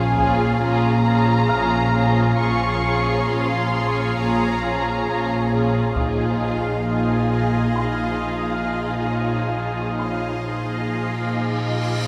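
Heard in a wet concert hall with a long reverb tail, this excerpt from a suspense film score sits in Bb minor at a slow 67 BPM in 4/4, its mood eerie and mysterious as the harmony moves from Bbm7 to Fm7/Bb at 6.0 seconds. Muted symphonic strings carry the music throughout: con sordino violins play a veiled melody between C5 and Db6 over a second violin line and background violas, while cellos and double basses hold Bb2 and Bb1 with soft attacks and vibrato. Alongside them runs a bright, bubbling synth texture of detuned sawtooth chords, its resonant filter stepping at random, swimming in chorus and its own reverb. A very quiet felt-muted upright piano adds a boxy, intimate glint high in the register, and a distant studio violin section floats faintly up to C7. Heavy-stick taiko hits, compressed and saturated, sound in the background at 0.1 seconds and again around 6.0 seconds, and a huge cymbal swell rises from 11.1 seconds to close the passage.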